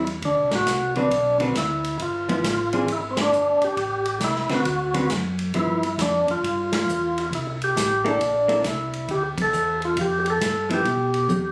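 A percussive tonewheel organ carries the melody up front, its clean, full tone marked by key click and a slow rotary speaker with plate reverb, while a second, darker organ supplies a round, lightly overdriven bass line through its own slow rotary. This swinging, soulful soul jazz organ trio excerpt moves at 135 BPM in G mixolydian, with a dark, compressed hollow-body electric guitar comping chords such as D13, G13 and E7#9 until 10.8 seconds. A vintage drum kit with a punchy kick and rolled-off top plays from the start, hitting band accents at 3.1, 6.7 and 9.3 seconds and closing with a fill at 11.3 seconds, all heard in a small room on a phone-recorded, compressed take.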